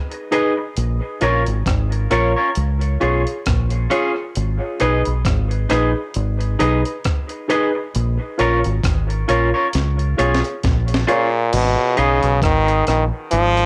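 Heavy and deep, this dub reggae excerpt at a swung 67 BPM in G# dorian pairs a gritty, sampler-style breakbeat kit with a thumpy kick and a round, punchy fingered bass, under a twangy, slightly broken-up electric guitar carrying spring reverb and dub echo and woody, slightly detuned upright piano stabs, before a brilliant, forceful trombone with vibrato takes the melody at 11.1 seconds over the tail of a drum fill, all captured as a home recording on cassette.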